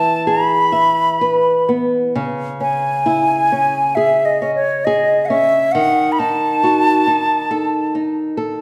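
Loose and rubato in 4/4, this longing, passionate fado-style ballad fragment sets an airy, bright wooden flute melody with vibrato and a slapback echo in front of small, fingerpicked nylon-string guitar that moves from E to C#m to D#dim, both close in a reverberant recital hall, with the flute falling silent at 7.9 seconds while the guitar rings on to 8.6 seconds.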